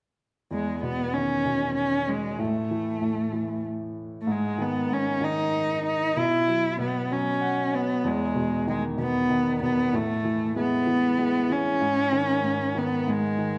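A swaying 6/8 lilt at 64 BPM, counted in dotted quarters, carries this tender pop fragment in E major, tuned to A4 = 442 Hz. A single bowed cello sings the melody up front with a rich, nasal, vibrato-laden tone, while a clear baby grand piano with long sustain accompanies it across a broad range, through changes such as E5, Bsus4, Emaj7 and G#sus4. Both parts play from 0.5 to 13.6 seconds, with a short piano fill at 7.1 seconds leading into the second section at 8.0 seconds, all set in a wet recital-hall reverb.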